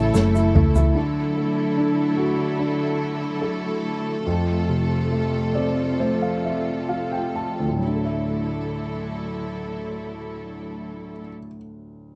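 A tender, emotional pop ballad cut from a longer piece, opening with a dark, round hollow-body electric bass, a warm concert grand piano and a rich string section, with a brief drum fill on snare and toms from an unplugged kit played with bundle sticks in the background and a grainy egg shaker entering at 0.1 seconds; the bass, drums and shaker drop out by 0.9 seconds. The piano, with audible action noise, deep bass and long sustain, carries the accompaniment up front, while the lush bowed string section holds smooth, vibrato-laden chords through 11.3 seconds. The tempo slows through the opening passage as the piano adds a fill from 5.1 seconds, and the dry, close 1970s-style studio sound keeps every detail intimate.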